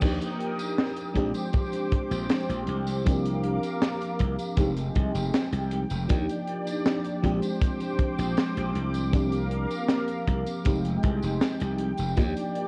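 Nostalgic and woozy, this short vaporwave fragment drifts along at 79 BPM in a straight 4/4, cut from a longer piece and steeped in worn, warbling old-tape character with a warbly pitch drift and light small-room reverb. An FM electric piano layered with a soft pad carries the accompaniment up front, its dreamy, detuned tone striking quickly and decaying through ensemble chorus, cassette tape coloring and analog delay. Behind it, a thick, airy unison pad holds sustained chords with a slow attack, shimmering through chorus and phaser. A glassy slap bass sits punchy and growly in the low register, bright and direct with tube saturation, stopping at 12.3 seconds along with a tight, gritty kick drum that pumps in a small room. A crisp acoustic fusion kit with a high-tuned snare, hi-hat, crash cymbal and tambourine rounds out the groove as the chords cycle from Ebmaj7 through Bb13, C9sus4 and Fm9 in F dorian.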